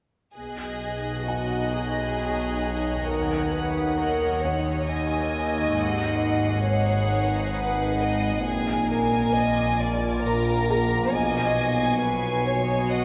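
A soft, floating string sound sits in a moderate scoring-stage reverb, giving this tense, mysterious cinematic fragment, cut from a longer piece, a sense of depth at a slow 67 BPM in 3/4. From 0.4 seconds, a distant, pure violin section carries the melody with soft, sul tasto bowing, while a close, intimate violin section with light vibrato plays a second line beneath it and a third, quieter violin section adds a high texture. Warm cellos and clear double basses, the basses sitting in the background, hold the low end, also bowed sul tasto with soft attacks. At 1.0 seconds an evolving wavetable pad enters with bright, morphing sustained chords treated with phaser and its own reverb, joined at 1.2 seconds by a warbling, detuned drone with moving overtones and chorus in the background. A felt-muted upright piano, mellow and very quiet with audible action noise, adds a faint texture from 1.3 seconds as the harmony moves from Badd9 through Ebm7, Abm7 and Bb7 before returning to Badd9.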